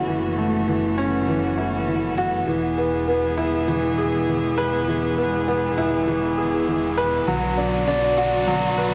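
A dark, warm production set in a wet recital-hall reverb frames this brief, melancholic piano-and-strings electronica fragment, cut from a longer piece and building throughout over chords moving from F#m7 to E and then Bm. Up front, a felt-muted upright piano plays a soft, intimate riff touched with tape echo, while a string quartet holds bowed, vibrato-rich chords and a lush symphonic double bass section supports it from below. At 5.2 seconds an electronic riser enters, lifting the moving build toward whatever comes next.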